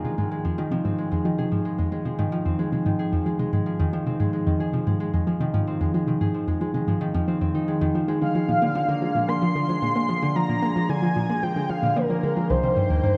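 Mysterious and cosmic, this excerpt of ambient, sequencer-driven space music moves at 112 BPM in a straight 4/4, centred on F dorian. A mellow, ringing concert harp plays fingerpicked arpeggios up front from the opening, its notes carried by delay, while a hollow, bouncy square-wave pluck with a detuned edge and a noise layer drives a low riff beneath it through chorus, phaser and delay. A filter sweep runs across the synth arpeggio sound for the whole passage, and the harmony moves from Fm7 to Bb7 at 8.2 seconds and then to Cm7 at 12.5 seconds. At 8.2 seconds a breathy, flute-like synth lead enters with a soft attack and sustained, vibrato-touched notes, shaded by tremolo, analog chorus and delay as it sits up front with the harp. A wet plate reverb with a 3.3-second decay wraps the dark production in a deep, spacious haze.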